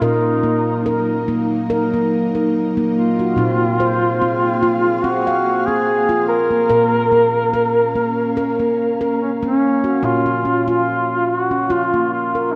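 The recording is dark and lush, bathed in a hall reverb with a touch of small-room ambience, and it sets a gentle, hypnotic world-meditative mood in a lightly swung metre. Up front, a handpan struck with soft fingertips plays ringing stainless-steel arpeggios across a broad range, its tone warm and mellow. Also in front, a duduk carries the folk-style melody with vibrato, sounding distant and roomy through a tape echo. Beneath them, an ethereal, airy pad of detuned sawtooth and triangle layers with a sub octave holds sustained chords with a slow attack and long release, treated with ensemble chorus and built-in reverb, before it stops at 10.0 s. The harmony moves from Ebm to Fm/Bb and settles on Bbm, and a new section begins at 10.0 s, where handpan and duduk continue together until the clip ends at 12.6 s.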